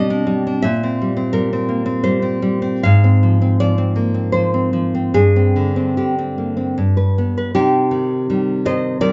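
Intimate and wistful, this short excerpt of a romantic piece for solo classical guitar unfolds in C minor and 3/4 time, with a rubato feel drifting between 73 and 86 BPM. The fingerpicked nylon-string guitar plays alone throughout, sitting up front with a warm, acoustic tone that spans from G2 up to F5. The harmony moves from G/B through C7/Bb and Fm/Ab to a suspended Gsus4 that settles onto G, before arriving at C minor at 7.6 seconds as a new section begins. The instrument is slightly flat of standard pitch, tuned to A4 = 435 Hz. A wet, large studio reverb surrounds the guitar, and the recording has a soft, rounded top end that keeps the sound gentle and close.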